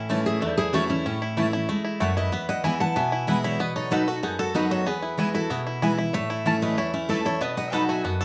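Bluegrass in E major at a lively, virtuosic 189 BPM, this excerpt cut from a longer piece opens with a twangy, percussive fingerpicked banjo melody over full-bodied dreadnought guitar accompaniment, joined at 0.1 seconds by round mandolin stabs and at 0.3 seconds by a bright jumbo guitar lead up front and a nasal, metallic slide line on lap resonator guitar in the background, all moving through A, E and B chords in a reverberant studio room.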